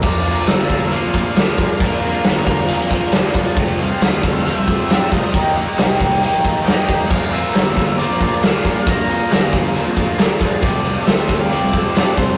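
A rough, warmly saturated rehearsal-room sound opens this sunny, swaggering classic rock excerpt at 136 BPM in 4/4, where a punchy, up-front big rock drum kit with bright cymbals drives three picked riff guitars (a biting, phased overdriven one, a distorted electric one, and a very quiet double-tracked cranked stack) over a fuzz fingered electric bass, while a dark octave-fuzz lead guitar carries the melody above a fainter octave-fuzz second line, a swirling, vintage phased string machine adds sustained chords from 1.8 seconds, a crisp group handclap sits barely audible from 0.5 seconds, and the harmony moves through Bb, F and Eb.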